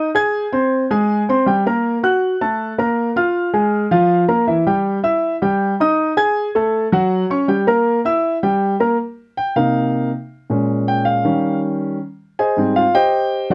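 Driving and fiery, this solo jazz piano piece moves at 160 BPM in a straight 4/4, cut from a longer performance and settling into C minor from 9.0 seconds. A warm, natural grand piano sits up front with long sustain, ranging from Ab2 to Ab6 through restless harmony that shifts from Ab through minor-major sevenths and bare fifths before reaching Cm7, Bbm7, Eb9 and Abmaj7. The dry, close studio sound carries a 1970s character with light reverb, and the piano takes a solo turn from 9.0 to 13.5 seconds.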